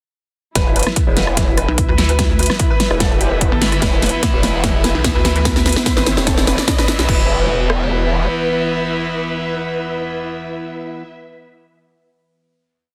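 A heavy, aggressive wobble dubstep piece opens at 0.6 s with a half-time drum build-up and fill. A punchy, tape-warm kick and rim click are layered with a huge, softly clipped snare, metallic closed hats and crash. At the same moment, a growling, detuned growl bass enters up front, wobbling through a formant filter at changing speeds with chorus and overdrive. Behind it, a clear concert grand piano repeats a riff over a pedal note in sixteenths through digital delay, and a warm studio string section bows slowly shifting chords with vibrato, portamento and sidechain pumping. From 1.6 s, a morphing wavetable pad with phaser sits very quiet underneath, and from 1.7 s a pulsing, saturated pluck wobble bass answers the growl bass. Sparse, echoing power-chord stabs from a double-tracked overdriven electric guitar and faint risers and impacts carry the build into a final chord held from 7.1 s, all under light digital ambience in a dense, heavily limited modern master.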